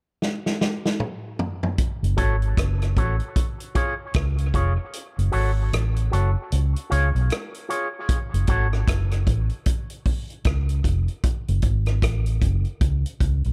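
A vintage drum kit opens this heavy, spacious dub reggae excerpt with a fill at 0.2 seconds, its small-room sound up front with a punchy kick, a medium-tuned snare and a rolled-off top. A dark, foam-muted fingered bass arrives at 2.0 seconds, round and amped, and an envelope-filtered electric guitar soon follows, bright, twangy and picked, trailing dub echo over a swung minor vamp. The kick drops out from 4.9 seconds for a stretch, letting the echo-heavy mix breathe before the groove returns.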